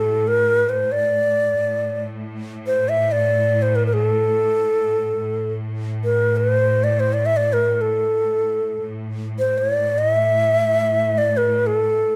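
In free time, this hypnotic, longing Persian modal piece in A dastgah shur is carried by an up-front, breathy, reedy end-blown ney singing a tongued, vibrato-laden melody from A4 to E5, while a lush, bright bowed cello section holds a low drone on A2 beneath it throughout the 12.2-second extract, all captured with close, detailed microphones and a light touch of reverb.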